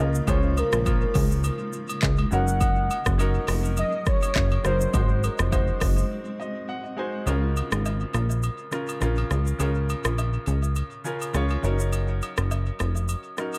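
A plucky analog bass sits up front in this joyful, breezy afrobeats excerpt: its punchy, funky, wave-folded tone has a fast attack and a decaying filter pluck, and it holds the low end across the clip. The piece moves at 103 BPM in 4/4 with a light 16th-note swing in Db major, with chords of Db6, Gb6 and Ab7. An electronic afro-pop drum kit brings a deep kick, crisp hats, handclaps, rim clicks and shaker, while agogo bells and woodblock add an acoustic, small-room layer with tape echo further back. A velvety synth lead carries the melody with chorus, vibrato and tape echo until 6.3 seconds. Beneath it, a cloudy, detuned granular pad holds blurred, full-bodied chords in the background until 7.2 seconds. A clear, polished concert grand piano plays short-sustained accompaniment throughout, adds fills at the break and again at 10.8 seconds, and the whole mix sits in an echo-heavy digital ambience.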